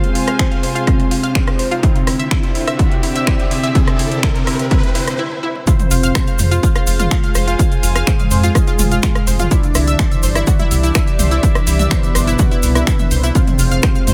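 A dark, cinematic melodic techno excerpt at 125 BPM in 4/4 opens on Fm with a full-bodied, vibrato-laced synth brass melody, a lush, warbling unison pad under a filter sweep, a reedy, gut-string studio string section in the background, a detuned analog pluck arpeggio with a bright edge, and a drum kit of finger snaps, metallic hats, rim clicks and toms. An overdriven, up-front electronic kick and a background riser soon join for the build-up, and after a brief break and drum fill, the drop at 5.7 seconds brings in an airy soft supersaw second line and a grainy tube shaker, with a round, deep analog bass with ring modulation following moments later. Sidechain pumping moves the brass, pad, strings, pluck, supersaw and bass as the chords shift between Fm and Cadd9, all set in light reverb.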